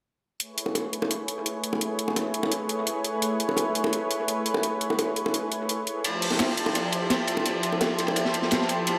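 A lush, detuned unison pad with chorus holds Amaj9 over bright, layered electronic hi-hats from 0.4 s in this warm, uplifting liquid drum and bass excerpt at 170 BPM, joined by tight, high-tuned bongos carrying dub echo, before a gritty, saturated breakbeat kit with dark cymbals and a medium-tuned snare arrives at 6.0 s as the harmony shifts to Fmaj7, the whole set in an echo-heavy mix with moderate plate reverb.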